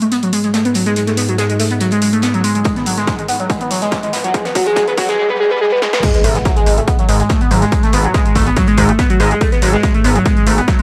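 An overdriven, screaming synth lead riff opens this dark, industrial peak-time techno cut at 142 BPM, its filter sweeping through the build-up over a punchy overdriven techno kit, a deep warbling ambient pad drone, a fat-snared low-tuned acoustic kit in the background and a riser, until the heavy electronic kick arrives at 2.7 seconds and the drop hits at 6.0 seconds with an impact and a gritty, wave-folded sawtooth bass, all in a dry, hardware-grit mix with light digital ambience.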